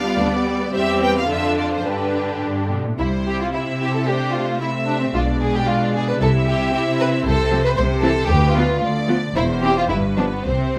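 A clear, intense violin section opens this lively, spirited excerpt from a quick classical-period movement for string orchestra in C major, singing the melody over a focused, up-front second violin line, a smooth, even viola accompaniment and a distant cello bass, all bowed with vibrato, until a rich, expressive double bass section joins at 3.0 s, the 2/4 pulse moving with rubato at 102-116 BPM under light reverb and close, detailed microphones.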